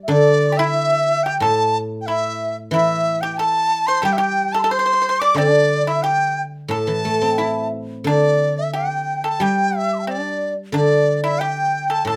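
Flowing in a rubato 4/4 around 91 BPM, this tender, graceful Chinese chamber ensemble excerpt in A yu mode sets an airy, buzzing dizi melody with expressive vibrato up front over ringing, silvery guzheng accompaniment from the start, while a very quiet, pure-toned xiao and a dry, percussive pipa trace second lines in a moderate studio reverb.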